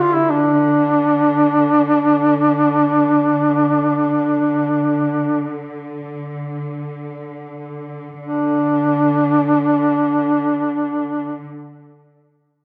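Mournful and longing, this Caucasian folk lament sets a solo duduk, mellow and roomy with vibrato and scooped notes, up front in a distant-sounding melody over a quiet, focused bowed string-section drone on D3, both sounding from the opening to 11.5 seconds, with the pace slowing down through the first 8.2 seconds before a new section begins, all in a moderate scoring-stage reverb, as a fragment of a longer piece.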